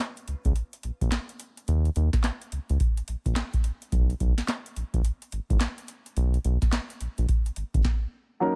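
New jack swing R&B with a punchy, slick mood, cut from a longer piece and moving at 107 BPM in 4/4 with a swung sixteenth feel, shifting from Eb5 to Abmadd9. A booming analog drum machine with a tape-warm tone drives it with a deep kick, plus a crisp snare, handclaps and metallic hi-hats in a short room, while a round, dark analog bass blending sawtooth, sine and ring-modulated tones sits up front with a fast attack and sustained, evolving notes. After a stop at 7.8 seconds, a baby grand piano with long sustain sounds briefly at 8.4 seconds, in a mix carrying studio reverb and lossy compression artefacts.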